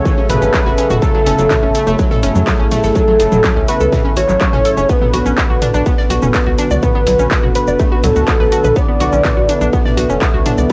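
Dark and cinematic, this melodic techno excerpt in B minor moves at 124 BPM in a straight 4/4, shifting from F#m to Bm at 4.9 seconds. A fat, detuned analog lead carries the melody with vibrato and tape echo over a smooth, warbling analog pad, a very quiet string-like drone and a round, ring-modulated analog pluck playing arpeggios, while a tight, punchy sequencer bass enters at 0.3 seconds with sidechain pumping. A distorted electronic kick sits up front beside a techno kit of handclaps, hi-hat, shaker and toms, and a gritty, oversized low-tuned kit adds a faint ride cymbal and fat snare, all in a small reverberant room with the character of a home cassette recording.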